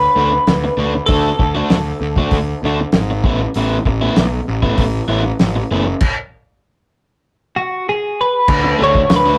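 Upbeat yet wistful, this indie rock excerpt opens with a bright, twangy twelve-string electric guitar melody bathed in spring reverb, over a round, fuzzed-out picked bass, an up-front overdriven semi-hollow guitar riff and a dry, cloth-damped drum kit with a fat snare, tight kick and dark cymbals. The harmony moves from D6 to Asus2 before a stop at 6.0 seconds, after which the twelve-string returns and a crunchy overdriven guitar riff slips in quietly in the background at 8.5 seconds. It all sits in a rough rehearsal-room sound with tube saturation and a moderate small-room reverb.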